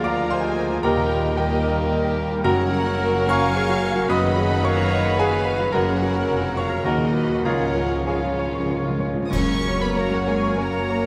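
A clear, up-front concert grand piano carries the melody with audible action noise and long sustain alongside lush, vibrato-rich violins in this passionate, brooding romantic movement in 3/4 with rubato, while a second violin line, an airy flute, a mellow clarinet and a very quiet oboe weave secondary lines over viola accompaniment, mellow horn and bright trombone chords, bright trumpet stabs and distant cello and double bass, with hard-mallet timpani filling from 7.4 seconds before dark cymbals and bass drum accent the turn at 9.3 seconds, all bathed in a vast, echoing cathedral reverb.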